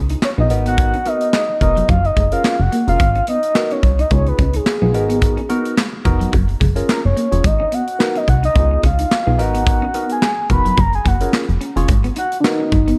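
Early-eighties boogie funk at 108 BPM in 4/4 with a light sixteenth-note swing, this slick, late-night passage in G# dorian is cut from a longer piece and cycles through C#9, G#m7 and F#maj7 chords. A soft, octave-layered synth lead carries the melody as a solo across the whole 13 seconds, its full, round tone given chorus, tremolo and vibrato and placed up front. Beneath it, a plucky analog bass with a punchy, wave-folded filter pluck, fast attack and decaying tone drives the groove, while a polished acoustic drum kit with a punchy kick, medium-tuned snare, hi-hat and handclaps sits close and airy. A barky tine electric piano, heard through a combo amp with phaser, fills in the harmony from 0.4 to 12.7 seconds. Tucked in the background, a clean, twangy electric guitar plays a compressed, picked riff bathed in lush chorus, all set in a small room with a dark, warm production.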